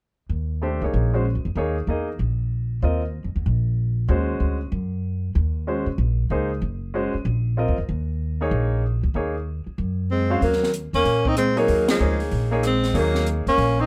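Hypnotic and spiritual, this modal jazz excerpt swings at 190 BPM in Eb dorian, opening on an Ebm11 chord as a woody, thumpy pizzicato upright bass and a brilliant, up-front grand piano set up the groove in a moderate club reverb. At 10.1 seconds a smooth-topped tenor saxophone with vibrato and scooped notes takes the melody while a clear alto saxophone adds a second line, and at 10.4 seconds a compact, dry cocktail drum kit with dark cymbals, a high-tuned snare and a punchy kick joins as the music moves into a new section. The band hits an accent at 11.8 seconds before the cut.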